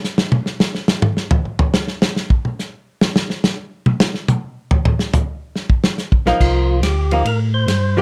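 A soul-jazz organ trio excerpt opens with a drum solo lasting the first 6.4 seconds, played on an acoustic kit with dark cymbals, a medium-tuned snare, a tight kick and toms, heard up front in a small room with a rolled-off top. The tempo is a brisk 141 BPM in 4/4 with a swung eighth-note feel, and the mood is bluesy and soulful in C dorian. At 6.3 seconds a round, clean tonewheel organ enters on the bass line with vibrato, key click and a slow rotary speaker. A hollow-body archtop guitar enters alongside it in accompaniment, its electric tone picked, compressed and shadowy. A second tonewheel organ takes the melody at 6.4 seconds, fat and lightly overdriven with third-harmonic percussion, vibrato, slow rotary speaker and plate reverb, sitting a little further back in the mix. The harmony moves from a chordless opening through Bbsus4 to Cm11, captured with close, detailed microphones and light reverb.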